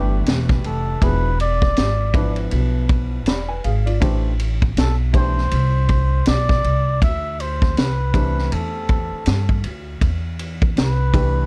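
A lazy 80 BPM groove in 4/4 swings its sixteenths at 59%, setting a smoky, mellow jazz-hop mood for this short cut from a longer hip hop piece. The vintage drum kit comes in at 0.3 seconds, its punchy kick, high-tuned snare, hi-hat and dark ride sitting up front with a rolled-off top, while the pizzicato upright bass, woody and steel-strung, anchors the low end just as prominently. An upright piano, slightly detuned and smooth with an old-fashioned glow, comps beneath the tune as the harmony moves from Em7 through E7b9 and Am9 to Dsus2 before settling back on Em7 at 10 seconds. Over it all, a cup-muted trumpet carries the melody in a soft, veiled, breathy voice, with gentle vibrato, soft attacks and scooped notes that feel whispered and intimate. The production is dark and dry, with little reverb, keeping every part close until the phrase closes at 11.5 seconds.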